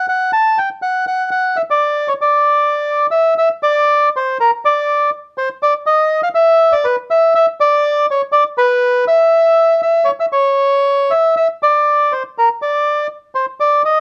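Worn, warbling cassette tape with a drifting pitch and a moderate club reverb colors this short excerpt from a longer tango. A single bandoneon plays alone and up front, its reedy, warm, vintage and band-limited voice moving through a high register in an elegant, playful rubato. A new section arrives at 3.4 seconds and carries the solo to the cut at 14.0 seconds.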